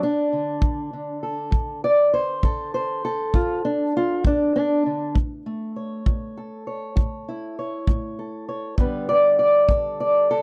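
This is a short excerpt of acoustic country blues, gritty and laid-back, moving at 66 beats per minute in 12/8 with a straight feel. A fingerpicked, ladder-braced acoustic guitar carries the melody from the opening at 0.0 seconds, ranging from D2 up to D5 with a dark, woody, boxy tone and the character of old strings. A small-room kick drum, tight and played with brushes, joins at 0.6 seconds and sits up front beside the guitar. The harmony moves from a D5 to A at 5.1 seconds and then to G at 8.8 seconds. The dry, close sound recalls a 1970s studio.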